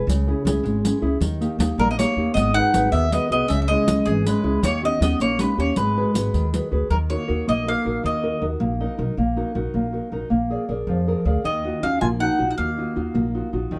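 Light reverb gives this close, intimate recording a gentle sense of space, with the guitar, bass and mandolin sitting up front. It is a wistful, romantic Italian folk serenade in a lilting 6/8, cut from a longer piece. A small-sounding nylon-string guitar, thumb-plucked with an audible finger squeak, carries the accompaniment over a woody pizzicato upright bass, while a close, dry riq adds bright jingles until 6.7 seconds. A round, double-strung mandolin picks the warm melody, shadowed by a soft-attacked clarinet in classical style playing a smooth second line beneath it. After the mandolin and clarinet fall away, the guitar steps forward with fills from 8.6 seconds, and the two melodic voices return, the clarinet at 11.4 seconds and the mandolin at 11.5, to close the passage.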